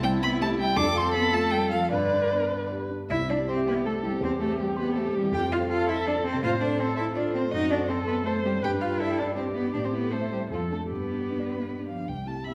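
A quick classical-period movement for piano quartet in C major and 3/4, moving at 148-168 BPM with a rubato feel and a cheerful, graceful mood, cut from a longer piece. A single bowed violin carries the melody from F4 to D6, sung with vibrato and portamento and a smooth, expressive top. Below it, one cellist plays a second line with a soft attack and gliding portamento, while a lone viola fills in accompaniment with the same vibrato-rich, expressive bowing. The grand piano accompanies across its full span from C2 to C6, dark and mellow, with short sustain, audible action noise and an intimate, vintage character that sits up front. The harmony runs from C through F and G, then moves through F#dim to G and Am before Dm7/F gives way to G at 10.9 s. A wet scoring-stage reverb with a 1.5-second decay surrounds the ensemble.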